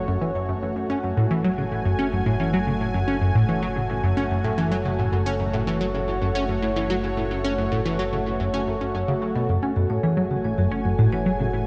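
A tight, driving sequenced sawtooth riff with a plucky filter, phaser and tape echo pulses up front over a lush, thick unison pad and a warbling vintage analog drone on F#1, while a metallic vibraphone plays ringing arpeggios in the background as it slowly fades in from 0.1 s, shaping a mysterious, hypnotic piece of ambient space music at 110 BPM in F# minor, held on a single F#madd9 chord and set in a concert hall reverb with a cassette tape character.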